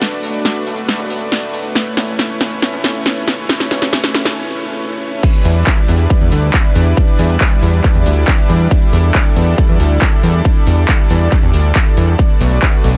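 A fat, detuned sawtooth bass sits up front in this excerpt of uplifting trance, entering at 0.2 seconds with a thick, filter-swept, evolving tone and sidechain pumping that gives it a breathing pulse under the E minor harmony. The mood is euphoric yet bittersweet, moving at 138 BPM in a straight 4/4 with tuning set to A4 = 444 Hz. Above it, a lush supersaw pad holds sustained chords from Bm7 to Aadd9 with a slow attack, a bright unison shimmer and a sub-octave layer, pumping in step with the sidechain. A big-room dance kit of punchy snare, handclaps, metallic hats and crash cymbal drives a drum fill through the build-up before a short break at 4.4 seconds. The drop lands at 5.2 seconds on Em7, where a layered, punchy electronic kick joins up front with a touch of small room ambience, and the passage turns back to Bm7 near the close, all bathed in light reverb.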